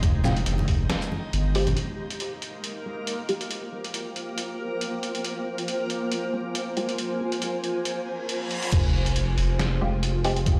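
A half-time groove at 138 BPM with a light swing on the sixteenths anchors this meditative, cavernous slice of deep dubstep in F minor, cut from a longer piece. A muffled, thumpy electronic kick and a saturated, up-front sine sub bass open the passage alongside low-tuned, thick-skinned congas that sound distant in a large room. A compressed, pitched-down sampler-style kit with a medium-tuned snare, hi-hat, shaker and crash runs throughout, while muted sawtooth dub chord stabs pluck through phaser, analog chorus and dub echo over an Fmadd9 harmony. From the start a reversed, dreamy triangle texture swells with its own reverb, and at 3.5 seconds a cloudy, evolving granular pad joins with sustained, blurred chords. A filter sweep on the ambient pad carries the middle stretch, a reverse cymbal and sub drop sound in the background from 8.2 seconds, and at 8.7 seconds the kick and sub bass return for the drop with an impact. 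The whole mix sits in a bare stone room with light reverb, as if played over a big sound system.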